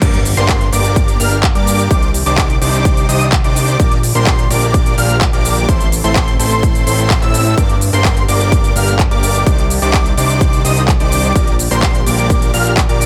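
A straight 4/4 pulse at 127 BPM drives this euphoric, emotional festival progressive house drop in G minor, cut from a longer piece. An overdriven, punchy electronic kick sits up front until 12.9 s, alongside a crisp, tape-tinged big-room kit of handclaps, hi-hat, shaker and crash cymbal, while a very quiet electronic impact marks the opening 1.9 seconds. A fat, nasal analog bass, saturated and evolving, carries the low end with sidechain pumping, and a huge, bright detuned supersaw lead plays a compressed riff, also pumping and treated with delay. Above it, a thick, wave-folded unison lead spins high arpeggios with vibrato, ensemble chorus, sidechain and delay, while a lush supersaw pad with phaser holds faint, soft-edged sustained chords beneath. The harmony cycles through Gm, Cmadd9, Gm/Bb and Am before returning, and the mix stays dry with little reverb.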